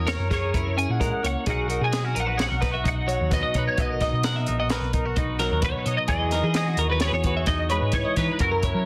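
Math rock and midwest emo in a bright, intricate mood, moving at 130 BPM in 5/4 with a straight feel in B major, tuned slightly below standard pitch, in a short clip cut from a longer piece. Three clean, picked twelve-string electric guitars carry the music for the full 8.9 seconds, all bright, twangy and compressed. One takes the melody up high, with ensemble chorus and slapback echo. A second plays accompaniment from the low register with a phaser, and the third spins arpeggios, also with slapback echo. Underneath, a hollow-body short-scale picked electric bass sits round and punchy, while a compact cocktail drum kit of hi-hat, kick and snare brings a small-room, dark, smooth sound with a high-tuned snare and rolled-off top. The harmony moves from F#7 to Bmaj9 at 1.5 seconds and to Emaj9 at 6.1 seconds, framed by light reverb and a dense, heavily limited modern master.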